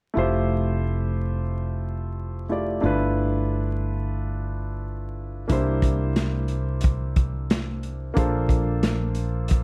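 A relaxed 90 BPM groove in 4/4 swings its sixteenth notes, setting up a smooth, mellow jazz-hop mood in F major, tuned slightly low to A4 = 438 Hz. A grand piano opens the excerpt, its intimate, natural tone carrying audible action noise and long sustain through a plate reverb as it voices the chords Fmaj9, G13, C7 and Bbmaj7. A round, dark fretless electric bass sits up front underneath, holding the low register between F1 and C2. At 5.5 s a crunchy breakbeat kit of hi-hat, kick and snare enters, saturated and gritty, with a tight kick, a medium-tuned snare and a rolled-off top. The whole cut has a warm, dark production with light reverb and a bed of vinyl crackle, and it is taken from a longer piece.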